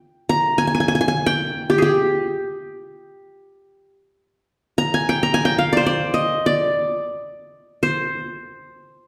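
A solo qanun carries this brief, longing fragment of Arabic maqam music, cut from a longer piece. Plucked with fingerpicks, its triple strings give an acoustic, bright-edged tone that sits up front, moving between G4 and Bb5 in a melancholic line. The instrument enters at 0.3 seconds and plays alone until 9.1 seconds. A single phrase idea is stated and then returned to at 4.3 seconds. Around it, a wet recital hall reverb lingers, and the room is heard from further back, lending the solo a sense of distance and reflection.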